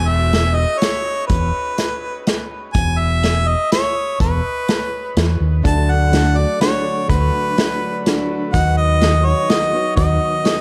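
A clear, close-miked harmonica carries the melody in this nostalgic folk rock and heartland rock excerpt in three, its scooped notes and light vibrato trailed by tape echo. Beneath it sit a round, punchy fingered electric bass and an up-front acoustic drum kit played with bundle sticks. At 5.6 s a boxy parlour steel-string acoustic guitar and a very quiet, intimate concert grand piano join the accompaniment, and just after, a soft, flute-like tonewheel organ sustains chords in the background through chorus vibrato and a fast rotary speaker, all within an echo-heavy small-room mix that moves from E5 to D and B/D#.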